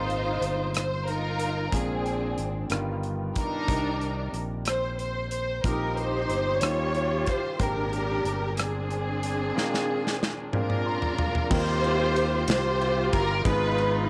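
A lightly reverberant small-room sound frames this slow, uplifting gospel passage in 6/8, where a lush, bowed string section carries the reverent melody with expressive vibrato, portamento and a slapback echo. A clear grand piano with audible action noise and long sustain accompanies throughout, over a round, punchy fingered electric bass and a polished studio drum kit with bright cymbals and a tight kick. A drum fill from 9.6 seconds and a piano fill from 10.5 seconds lead into a new section at 11.5 seconds.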